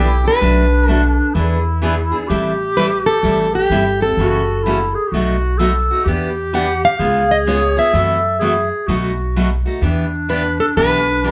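Heard from further back in a moderately reverberant studio, this fiery, swinging excerpt of acoustic string swing sets a bright, boxy plugged-in steel-string guitar on the melody over a breathy, vintage clarinet with vibrato and a soft subtone on the second line, while a second picked steel-string acoustic guitar with fresh strings plays the accompaniment and a woody, thumpy pizzicato upright bass on gut strings sits up front, all four playing throughout the 11.3 seconds as the harmony moves from Bm7 through F#m7b5 and B7 to settle on Em7 at 9.8 seconds.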